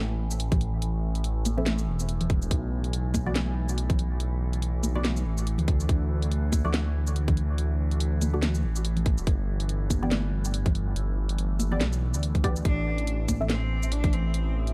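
A deep, rumbling detuned saw bass sits up front in this brooding excerpt of deep dubstep at 142 BPM in A minor, with a half-time, swung feel, joined from the first moments by a tight, layered electronic kick, a garage kit with cracking snare and hats plus shaker, and high-tuned congas set back in the mix with dub echo. Beneath them a resonant drone of moving overtones holds sustained chords through chorus and its own reverb, while a muted, filter-plucked dub chord stab drifts through phaser and echo over a progression from A5 through Bm, D5 and G to Am. At 12.7 seconds a distant, clear bowed cello enters with smooth vibrato, its short line echoing into the dark, dry production.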